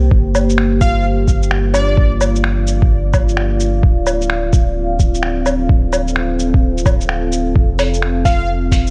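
A swung 4/4 groove at 129 BPM drives this rainy, melancholic future garage excerpt in G minor, tuned to A4 = 435 Hz. An up-front, thumpy electronic kick leads the rhythm, pitched down, compressed and muffled, while a softer lo-fi sampler-style kit adds finger snaps, hi-hat, shaker and woodblock, both set in studio reverb with a tape-warm tone. Beneath them a round, sine-based sub bass hums low, tube-saturated and pumping against the kick, as a deep, dark ambient pad holds slow-blooming, detuned sawtooth chords through Gm7, Dm7 and F7, thickened by chorus and its own reverb. A punchy, catchy unison lead with a filtered pluck flickers in from 0.8 to 2.1 seconds and returns briefly at 8.3 seconds, colored by analog chorus and delay. The whole cut carries a light reverb and a cassette-tape haze that suits its moody, rainy atmosphere.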